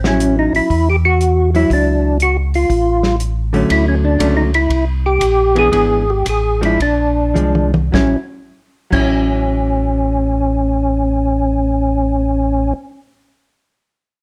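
Greasy and soulful, this short soul jazz organ trio excerpt swings in 4/4 in A major at 102-120 BPM, easing its tempo between 3.7 and 7.9 seconds before a drum fill leads back to the A6 chord at 7.9 seconds. A mellow tonewheel organ carries the bass line, round and dark with audible key click and a slow rotary speaker, sitting up front in the mix. Above it, a second tonewheel organ takes the melody with a fat, percussive tone shaped by third harmonic percussion, chorus vibrato and the same slow rotary spin. A clean hollow-body electric guitar, fingered and dusky, supplies the accompaniment through chords that move from Dmaj7 through C7, E7 and Bb7. The acoustic drum kit, dry with a tight kick, medium-tuned snare and rolled-off top, plays until 9.0 seconds, and light reverb gives the whole a gentle sense of room.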